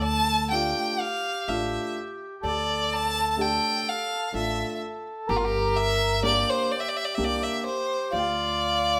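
Bittersweet and soulful, this short klezmer passage, cut from a longer piece, moves at a slow pace in three. A clear, smooth violin carries the melody up front and close, bowed by one player with an even vibrato that sings from the middle register up to its high notes. Beneath it a reedy, full accordion with dry tuning and a boxy character plays a second line, while a woody upright bass plucks the low foundation on steel strings. A dark upright piano with long sustain adds accompaniment from 0.5 to 7.7 seconds, under harmony that moves from D minor to G minor at 5.3 seconds and back at 8.1 seconds. The band plays live in one room, wrapped in the wet ambience of a stone space.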